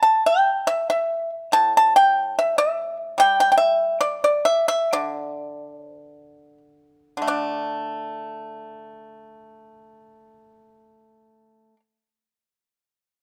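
The recording is close and detailed, with a light reverb around a dry, percussive pipa that sits up front. This short passage of Chinese traditional music, cut from a longer piece, features the pipa alone, plucked with fingerpicks across a range from A2 to A5. The mood is pastoral and elegant, and the music moves freely in a rubato 2/4. Between 3.2 and 7.3 seconds the playing slows, easing into a second section that begins at 7.3 seconds. The pipa sounds until 11.8 seconds, and the section runs on briefly until the recording closes at 12.5 seconds.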